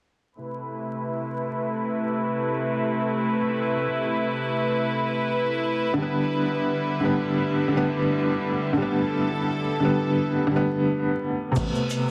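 A straight, unhurried 4/4 trip hop pulse frames this cinematic, melancholic excerpt, where a reedy, gut-string studio string section holds sustained chords through a filter sweep from 0.4 seconds, joined at 5.9 seconds by a soft felt-muted upright piano colored with tremolo and tape echo as the harmony moves from Amadd9 to Em7. After a brief break, at 11.6 seconds a pitched-down, overdriven sampler-style drum kit with a thumpy kick lands alongside a round analog bass note and a faint, band-limited tube shaker. Light reverb, vinyl crackle and a dense, heavily limited master give it a dusty, intimate sheen.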